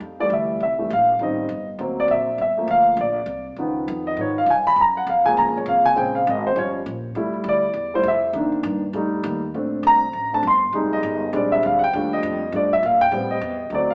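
Swinging and brassy, this fast big band swing excerpt puts a warm grand piano up front in a solo across its full 13.9 seconds, over a woody, bright pizzicato upright bass on steel strings, with rich jazz harmony moving through chords like Gbmaj7 and Ebmaj9#11, all set in the wet reverb of a large studio with the live-in-one-room feel of a band heard through a small speaker.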